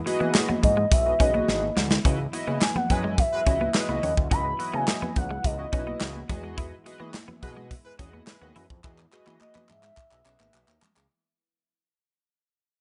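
A smooth, danceable stretch of early-eighties boogie funk in E major at 106 BPM opens with a soft, detuned sawtooth pad holding sustained chords, fading out across the whole 11-second cut from a longer piece. Almost at once the groove arrives: a polished acoustic kit with a tight kick, medium-tuned snare, hi-hat and handclaps sits up front; high-tuned congas ring softly in the background; a fat, saturated analog bass with a plucky filter anchors the low end; and a bright, clean semi-hollow guitar plays a compressed, chorused riff. A glossy, retro polysynth with pulse-width modulation fills in the accompaniment, while a velvety, warbling synth lead carries the melody with vibrato, portamento, chorus and slapback echo. A warm horn section with light vibrato adds a smooth second line in two short bursts, the first at 2.9 seconds. The harmony moves from Emaj7 to C#m11 and back, with drum fills near the start and through the closing seconds, all captured in a rough home-demo mix with a dull top end.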